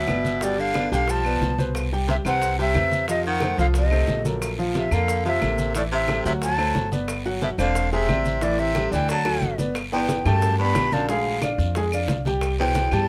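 Sunny and danceable, this Afro-Cuban jazz excerpt in G major moves at a brisk 180 BPM, with a breathy concert flute carrying the melody over a gritty, growling baritone saxophone second line with scooped notes, a clear upright piano with long sustain comping through rich jazz chords, and a thumpy, dark pizzicato upright bass up front, while low-tuned congas, tight high bongos, woody claves, a raspy guiro and grainy maracas fill out the percussion in a lightly reverberant, closely miked mix, until a drum fill at 9.3 seconds leads into a new section at 9.8 seconds.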